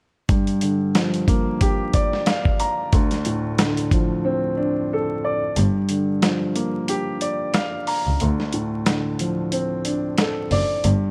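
Boom-bap hip-hop at 91 BPM in G minor, this gritty, dark excerpt swings on its 16ths as a mellow, boxy baby grand piano, filtered through cassette tape coloration, moves between Gm7 and Dm7 chords over a compressed, sampler-style soul drum kit with a thumpy kick and medium-tuned snare. After a break at 4.2 seconds, the kick drops out at 5.6 seconds just as a bowed double bass enters, its intimate, airy sul tasto tone carrying a light vibrato. Vinyl crackle and light studio reverb give the close, up-front sound its dusty character.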